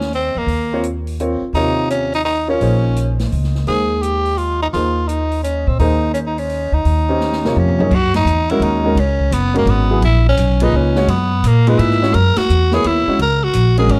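The recording has a dark, warm production with light reverb, and this is a passage cut from a longer modal jazz piece in a swung triple metre. A growling tenor saxophone carries the melody up front, its raspy, gritty tone shaded with vibrato in a soloing jazz style. Beneath it, a grand piano supplies present accompaniment, while a woody pizzicato upright bass on steel strings sits prominently in the mix. An acoustic drum kit in a small room, with dark cymbals, a medium-tuned snare and a boomy kick, sits further back, and a drum fill at 7.2 seconds leads into a new section at 7.9 seconds, where the harmony moves to a ninth chord and the band hits an accent at 8.1 seconds. The mood is searching and hypnotic.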